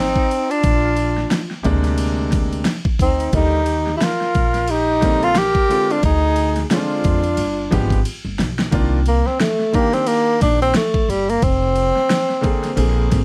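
Jazz-hop in C minor at 89 BPM with a swung 16th feel, this smoky, cool excerpt sets a breathy, subtone tenor saxophone melody with light vibrato and scooped notes over a woody pizzicato upright bass, a mellow, tongued metal flute second line that falls away at 8.0 seconds, a clear grand piano with audible action noise entering at 1.6 seconds, and an up-front overdriven drum kit with a knocking kick and fat snare whose fill at 8.1 seconds ushers in a sax solo over Cm9 and Fmadd11, all wrapped in light reverb and vinyl crackle.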